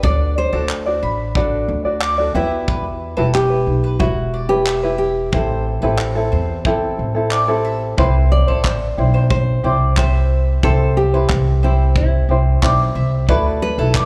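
A straight 90 BPM groove in 4/4 from a punchy kick drum and handclaps on a mid-forward studio kit with a rolled-off top drives this easy-going, carefree acoustic pop excerpt, tuned to A4 = 441 Hz and moving through D, Emadd9, Am7 and Dadd9. Up front, a woody, thumpy pizzicato upright bass on gut strings sits beside a bright, thumb-plucked tenor ukulele. Meanwhile a full-bodied, fingerpicked nylon-string guitar carries the melody with audible finger squeak, and a bowl-back mandolin picks double-string arpeggios, with slapback echo on both the ukulele and the mandolin. The band plays throughout, heard through a venue's PA with light reverb and club ambience.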